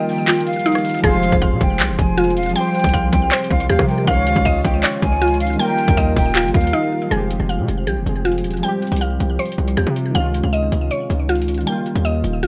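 A breathy jazz flute with vibrato and tape echo opens this dark, hard-hitting half-time trap piece. It floats over warbly, nostalgic lo-fi synth keys, a woody, mallet-like synth pluck playing arpeggios, and a deep, moody ambient pad sitting in the background. The trap drum kit arrives almost at once with a hard-clipped kick, metallic hats, handclaps and rim clicks, and at 1.0 seconds a punchy, heavy 808-style bass joins it up front in a moderate studio room, while the flute drops out at 7.1 seconds and a barely audible reverse cymbal appears at the very end.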